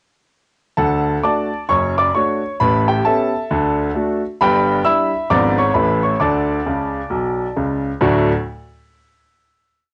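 Stride-piano jazz with an exuberant, swinging lilt, played solo on a brilliant grand piano that sits up front and intimate, its action noise audible and its notes ringing with long sustain. The tune sounds in filled octaves over a stride bass, a fill arrives at 6.7 seconds, and the piece settles on a closing chord from 8.0 seconds. Light reverb and the dulled top end of a home cassette recording give the sound a homespun character.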